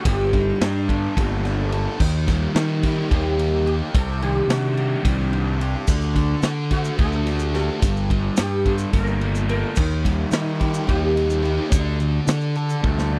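Hypnotic and trippy, this psychedelic rock excerpt, cut from a longer piece, runs at 216 BPM in eighths in an odd 7/8 metre with a straight feel, set in D phrygian dominant. A buzzing, shimmering sitar carries the melody, its sympathetic strings ringing under a slapback echo, while a thick, double-tracked fuzz guitar drives the riff through distortion and a phaser. Beneath them, a round, punchy fuzz bass, played with the fingers and overdriven, sits up front. A raw garage drum kit with a punchy kick, medium-tuned snare, toms, and crash and ride cymbals sounds gritty and saturated, its top rolled off in a small room, and grainy, mellow maracas join at 5.9 seconds. The harmony cycles from Gmadd9 through Eb, Cmadd9 and D before settling on Dsus4, and a drum fill at 12.8 seconds closes the passage, all captured in a dry, close 1970s-style studio sound with little reverb.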